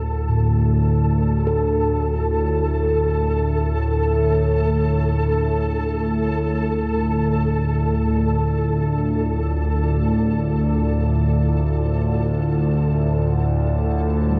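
A desolate, ominous dark ambient drone in D minor, cut from a longer piece and moving in free time, opens with an up-front analog drone, detuned, evolving and mellow with chorus, beneath a flickering, grainy texture soaked in shimmer reverb. From 0.3 seconds a soft quartz singing bowl struck with a felt mallet rings out meditative arpeggios through tape echo, its pure, slowly beating tones fading out and falling silent at 6.9 seconds before a brief return at the very end. A deep, moody pad fades in from the background at 3.3 seconds with chorus and shimmer reverb, and the dark, warm production bathes it all in a huge, wet reverb that lets the D minor chord hang like fog.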